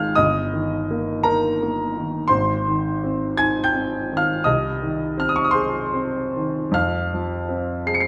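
Gently rubato in 4/4, the phrasing stretches and breathes at an unhurried pace, giving this short fragment of a romantic nocturne a serene, tender character. A single grand piano carries the whole piece, its tone warm, smooth and slightly vintage, placed up front in the sound and spanning a range from G1 up to Db7. The harmony moves through Eb/G, Ab, Ab/C and then Fm at 6.8 seconds, a shift into a minor colour as the passage closes. A moderate recital-hall reverb lends the instrument a natural sense of space, while a faint mains hum sits beneath the music. The piano is tuned a touch above standard pitch, at A4 = 441 Hz, and the fragment lasts just over 8 seconds as part of a longer classical work.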